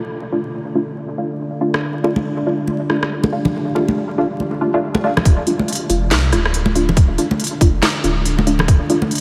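A cavernous, reverb-soaked mix with a bed of vinyl crackle opens this brooding deep dubstep excerpt in D minor, moving at 140 BPM with a swung, half-time feel. A dark, detuned sawtooth ambient pad holds sustained chords under muted, up-front dub chord stabs carrying dub echo, both shaped by filter sweeps, while a garage kit with cracking snare and crisp hats enters at 1.7 seconds, joined by hard-handed, close and dry bongos and congas with dub echo. At 5.3 seconds a build-up begins as a tight, tape-toned electronic kick and a rumbling, beating detuned saw bass arrive.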